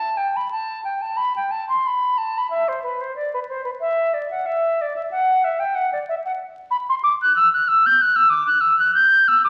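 Flowing and radiant, this brief excerpt of a baroque-style classical fantasia features a single concert flute playing unaccompanied from 0.0 to 9.5 seconds. The music moves in triple metre, shaped with a free, rubato sense of time. The flute sits up front with a pure, straight tone and tongued articulation, ranging from B4 up to G6. A moderate recital hall reverb surrounds the instrument, giving each phrase a gentle halo. The whole is heard through the patina of a very old 78 rpm record, with tube saturation and vinyl crackle lending an antique, gently worn character.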